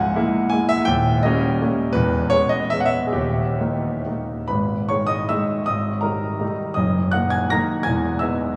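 An intimate, up-front grand piano, its action noise audible, plays a capricious and nostalgic romantic classical dance in 3/4 with dotted rhythms and free rubato at 119-182 BPM, its phrase heard twice in this brief fragment cut from a longer piece, moving from A#m7b5/C# and D#7 through G#m to a closing Emaj7 while a vast cathedral reverb lets each chord ring on long into the echoing space.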